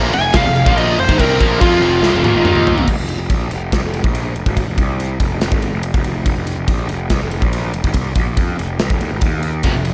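A straight 4/4 pulse at 142 BPM drives this aggressive, heavy hard rock fragment in F minor, cut from a longer piece. It opens with three rhythm guitars stacking a riff over an Fm chord: a cranked, overdriven stack guitar sitting in the background, a scooped, high-gain, double-tracked guitar and a tight distorted one, both very quiet. A bluesy overdriven lead guitar takes a solo from 0.1 to 2.8 seconds, its distortion and analog delay giving a warm edge as the harmony moves to Eb5 and a drum fill arrives. From 2.9 seconds the chords drop away and the guitars fall silent, leaving the growly, fuzz-soaked picked bass up front with the punchy gated 80s drum kit, its bright cymbals and medium-tuned snare ringing in a stone room. The riff guitars return only briefly at 9.6 seconds as the fragment cuts off, all set in a studio reverb.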